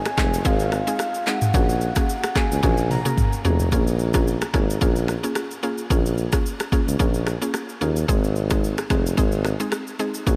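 Afrobeats with a hypnotic, mellow mood and a lightly swung groove: this cut from a longer piece opens with a soft, dark, octave-layered synth lead carrying the melody through chorus, tremolo and diffuse ambient delay until 3.4 s, while a punchy, close-miked tuba with vibrato holds the bass up front, an electronic afro-pop drum kit with deep kick, hi-hat, snaps, handclaps, shaker, rim clicks and toms plays a fill from 2.6 s, and a woody, bright, mallet-like synth pluck with chorus adds accompaniment, the mix soaked in huge, dreamy reverb.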